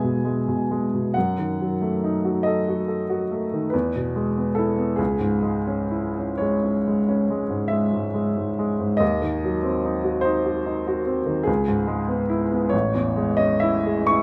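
A woody, vintage-toned upright piano plays alone, up front and close, with long sustain in this tender, dreamy romantic nocturne, unfolding in a slow, rubato 9/8 at 39-50 BPM through chords from E and C#m to diminished colours and a closing Amaj7, all within a moderate recital hall reverb, over a passage cut from a longer piece.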